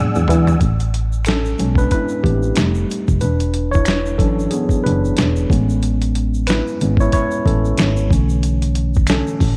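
Relaxed and warm, this neo-soul R&B excerpt, cut from a longer piece, rides a gently swung sixteenth-note groove in four. It opens with a short drum fill, while a soft, flute-like tonewheel organ holds high chords through its fast rotary speaker and chorus vibrato before dropping out at 0.6 seconds. From there the worn, slightly out-of-tune tine electric piano takes a clean, direct solo up front. A punchy, round FM bass with a dark, decaying tone sits beneath it, and a gritty, compressed sampler-style drum kit adds a thumpy kick, medium-tuned snare, hi-hat and toms with a tape-tinged character. An egg shaker and finger snaps stay close but in the background, and light digital reverb surrounds the mix as the harmony moves through E9, Amaj9, F9 and Bm11.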